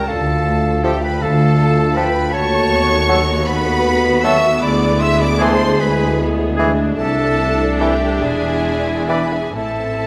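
A slow, rubato 6/8 lilt at about 43-55 BPM in dotted quarters carries this solemn, melancholic fragment of a romantic orchestral movement, moving from D minor through B7/D# and E7 to rest on A minor. Focused, vibrato-rich violins sing the high melody while a second violin group, a clear, soft-edged clarinet and a pure, crisp flute weave second lines; a smooth cor anglais and a lightly vibrating bassoon join from 0.8 s. Underneath, lush, close violas, dark horns holding sustained chords, even cellos and a rich double bass section give the texture weight, all bathed in a moderate scoring-stage reverb.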